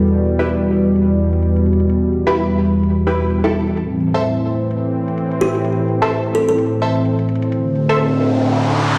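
A bright, detuned sawtooth pad with a resonant, evolving filter swell sits up front in this bouncy, gritty bass house excerpt at 128 BPM, sustaining chords through chorus as the harmony moves from E minor to A minor at 3.8 s. Nasal, band-passed chord stabs with ring-modulated bite ride a phaser, analog chorus and tape echo over a very quiet, metallic layered hi-hat, the whole groove swinging on 16ths, while a woody, hollow kalimba adds a short thumb-plucked melody with tape echo at 5.4 s. An electronic riser enters at 7.8 s, and the whole mix sounds as if played on a big sound system in a bare room, with a lush hall reverb.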